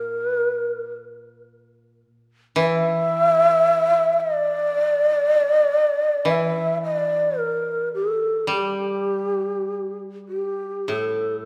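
A moderate concert-hall reverb surrounds this short fragment of meditative, solitary Japanese chamber music, which moves slowly and freely in rubato. An up-front, hollow shakuhachi carries the melody throughout its 11.5 seconds, its end-blown bamboo tone breathy and softly attacked with a gentle vibrato. Beneath it, a lower-sitting koto plucked with fingerpicks gives bright, woody accompaniment.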